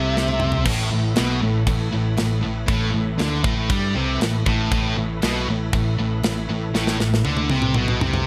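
A biting, overdriven lead guitar note with digital delay flashes out over a thick, gritty tonewheel organ on slow rotary speaker, a growly, punchy picked bass and a wall of scooped high-gain and sludgy, double-tracked distorted guitar riffs, as a tight, up-front metal drum kit with bright cymbals enters with a fill at 0.2 seconds and drives this aggressive hard rock excerpt in straight 4/4, closing with another drum fill from 6.7 seconds.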